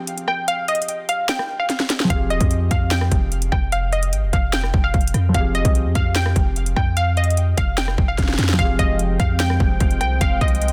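Brooding and dark, this half-time trap excerpt at 148 BPM in F minor opens on a glassy, crystalline wavetable pluck melody with chorus and digital delay over a soft, felt-muted upright piano. Electronic drums sit up front with a hard-clipped kick, sharp snare and metallic hats, and after a fill a deep, boomy 808-style bass enters at 2.1 seconds. Near the close, at 8.6 seconds, a sweeping resonant pad with a bright, warbling vintage tone arrives, joined by a very quiet velvety synth lead with vibrato, all inside a dense, heavily limited modern master with digital ambience.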